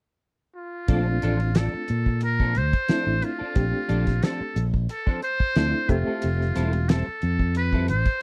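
Electric jazz fusion at 90 BPM in Bb lydian, bright and funky, this excerpt opens with a buzzy, breathy trumpet in a metal mute carrying the melody with a slapback echo from 0.6 seconds. At 0.9 seconds a damped 70s drum kit with a fat snare and tight kick, a punchy fingered electric bass, a reedy electric piano with tremolo and a clean picked electric guitar with ensemble chorus stabs join over Bbmaj9, moving to Fmaj9 at 5.9 seconds. The dry, close 1970s-style studio sound keeps the whispered trumpet, drums and bass up front.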